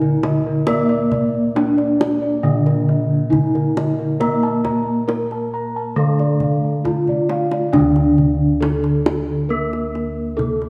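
A wet concert-hall reverb surrounds this stately, hypnotic excerpt of Javanese gamelan in D pelog at 68 BPM, where a mellow bronze metallophone struck with padded disc mallets carries the melody with shimmering beats over a dark, smooth horn-mallet metallophone accompaniment, bright bossed gongs with tape echo play arpeggios until 7.8 seconds, vintage band-limited bossed gongs hold the bass, and a tight, close kendang played with soft hands adds a drum fill at 7.1 seconds before the opening section returns.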